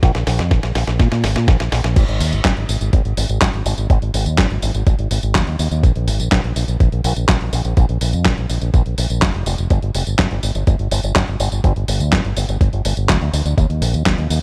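A dry sound frames this bittersweet, melodramatic italo disco fragment in straight 4/4, where a bright fingered electric bass with an envelope filter sits up front beside a gritty, dusty soul sampler-style kit of crash, handclaps, filtered hi-hat, medium-tuned snare and tambourine, all anchored by a thumpy, tape-warm electronic kick, opening with a drum fill before the groove settles in at 2.0 seconds.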